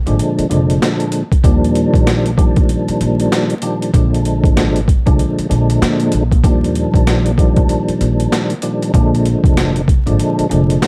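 Boom-bap hip-hop at 96 BPM in Eb major, this nostalgic, soulful excerpt swings its sixteenths over a progression that moves between Bb7 and Ebmaj9, wrapped in a dark production with light reverb and vinyl crackle. A fat, lightly overdriven tonewheel organ sits up front with key click, percussive second-harmonic attack, chorus vibrato and a slow rotary speaker. A woody, growly pizzicato upright bass and a gritty, pitched-down sampler drum kit with a thumpy kick and high-tuned snare play throughout.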